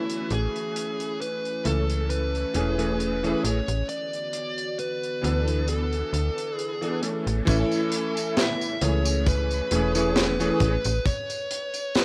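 A rough, lightly reverberant home-demo sound frames this nostalgic, woozy vaporwave excerpt at 67 BPM in A major, where a fuzzy, gritty lead guitar with tape echo carries the melody over a clangy electric grand piano, a warbling, detuned pad in the background that stops at 7.4 s, a snappy metallic FM bass with tube saturation, and a tight, mid-forward kit of high-tuned snare, hi-hat and tambourine joined by a kick drum from 7.5 s, moving from Amaj7 to D69 and back before dropping out at 11.1 s.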